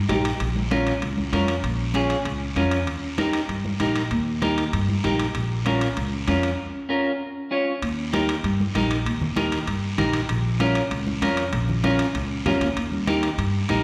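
A straight 4/4 cumbia pulse drives this danceable, fiery Latin excerpt at 194 BPM in Bb dorian, cut from a longer piece. Close, bright congas with a thin skin sit in the background of the percussion, ringing metal-shell timbales sound dry and near, and a raspy guiro sounds distant. Up front, a woody pizzicato upright bass on steel strings anchors the low end from the first moment, joined at 0.1 s by a clean, picked electric guitar with a warm tone carrying the accompaniment. The harmony swings between Bbm and Eb across two repeated passages, the second beginning at 7.8 s. A large, wet reverb like that of a church or concert hall surrounds the ensemble, and all five parts play together until 13.8 s.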